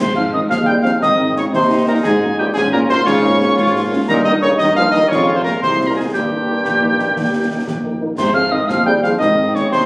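A proud, spirited wind-band march in 6/8 opens with a dark, close-miked cornet carrying the melody up front with light vibrato, while a pure, tongued piccolo sings a high second line above it and a mellow tuba holds down the bass with a soft attack. A warm euphonium adds another second line in the background, and concert snare drum, clash cymbals with a dark edge, and concert bass drum keep the military step at 117 BPM in dotted quarters. A very quiet, mellow French horn section joins with accompaniment at 0.2 seconds, and a clear trombone section enters at 0.5 seconds with sustained chords sitting just behind the tune. Set in Ab major, the harmony moves through Bbm7, Eb/G, Fm and Eb before returning home to Ab. The brass players share a classical style, and the sound comes across as if caught on a phone in the room, with wet, roomy reverb and compression shaping this short cut from a longer piece.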